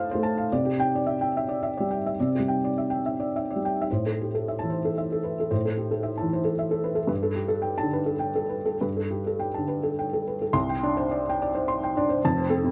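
A felt-muted upright piano plays alone in this short excerpt of reflective, intimate neoclassical minimalist music, moving in a rubato 3/4 at around 100-114 BPM. Its mellow, muffled tone sits up front, captured by close, detailed microphones that pick up the audible action noise, with a light reverb around it. The harmony drifts from Cadd9 to Am at 3.9 seconds, then to Gadd9 before settling on Csus2 at 10.5 seconds.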